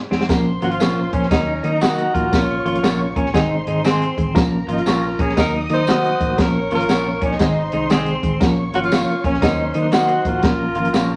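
Joyful and uplifting, this excerpt of uptempo 1960s-style soul swings at 118 BPM over Bbm, Ebm and Ab chords. It opens with a drum fill at 0.0 s from a compact, punchy, up-front cocktail kit, joined by a round, foam-muted bass, a reedy electric piano with fast tremolo, and a dark, fingered guitar riff with tremolo. A bright, twangy picked guitar adds tube-saturated stabs from 0.8 s, while lush bowed strings with portamento and a jingly background tambourine fill out the arrangement. A breathy, close-miked tenor saxophone carries the melody from 0.6 s, set in a wet studio reverb.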